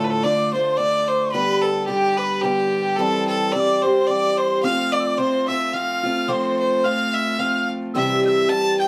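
A bowed fiddle, a wooden whistle and a picked acoustic archtop guitar all begin together in this lively, cheerful celtic folk fragment, cut from a longer piece and lasting 8.9 seconds. The tune moves at 109 BPM in 3/4 with a light swing on the eighth notes, and the fiddle carries the melody up front with a biting, earthy tone and a light vibrato. Sitting higher and further back, the whistle adds a second line with an airy, mellow voice, marked by a crisp chiff at each note's start and an expressive vibrato. The archtop guitar, also up front, supplies a picked accompaniment that moves through Dm, G/D, C/E and F before landing on C at 7.9 seconds. A moderate studio reverb gives the trio a natural sense of room.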